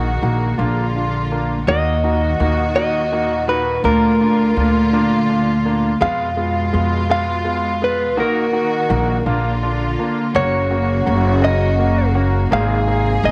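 Set in a small room with light reverb, this melancholic, aching six-eight pop ballad in Eb minor moves slowly at 55 BPM. A clean, compressed electric guitar carries the melody with a scooped, picked tone shimmering through harmonic tremolo, while an intimate grand piano with audible action noise plays the accompaniment and a studio string section holds soft-attack, sul tasto chords with light vibrato. Up front, a woody, thumpy pizzicato upright bass on gut strings anchors a progression that passes through Fdim and Gb before settling on Abadd9 at 12.5 seconds, all four parts sounding from start to finish.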